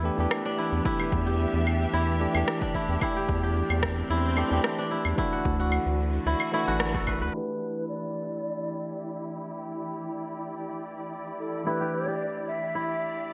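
Crisp, ringing kora arpeggios stand out in this mystical organic downtempo excerpt, set over a bell-like tine electric piano with delay and a smooth, vibrato-laden studio string section, both pumping with the sidechain. A deep, round analog bass, a punchy overdriven electronic kick and a layered shaker, rim click and claves with gated reverb carry the first half, marked by a band accent at 6.8 s, before stopping around 7.3 s. From there a breathy, distant ney takes the melody with delay as the strings move through a filter sweep, a very quiet bronze singing bowl hums beneath, and the whole piece sits in a moderate plate reverb with a 1980s-style digital sheen.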